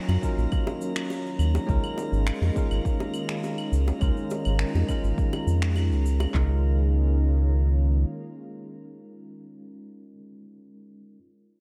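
A round, deep analog bass sits up front in this relaxed sunset chillout excerpt, its dark, sustained tone carrying the low end until about 8.1 seconds. Beside it, a deep house drum kit of handclaps and a deep kick comes through overdriven and layered, with the sound of a large room, joined by overdriven electronic claves, cabasa and finger snaps and very quiet, tight, high-tuned bongos struck with hard hands. A bright, bell-like tine electric piano plays clean accompaniment through tape echo, while a lush, thick unison pad warbles with chorus in the background. High above, a glassy texture of drifting overtones adds a calm shimmer with chorus and its own reverb. The rhythm parts drop away around 6.5 seconds, leaving the pad, bass and electric piano to linger over the Db69 chord, with the piano holding on to the end at 11.2 seconds.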